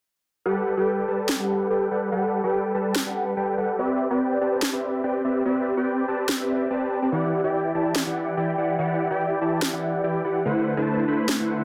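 A half-time 4/4 groove at 144 BPM drives this euphoric, playful future bass excerpt in G major, with a sharp, produced electronic snare entering at 1.3 seconds and sitting up front. Huge, lush supersaw chords built from detuned sawtooth unison carry the riff from 0.5 seconds, moving through Gmaj9, Cmaj9, Em9 and D13 with a bright, fast-attack sustain colored by phaser, cassette tape, a low-pass filter and dub echo. The whole is bathed in a wet digital room reverb and pressed into a dense, heavily limited modern master.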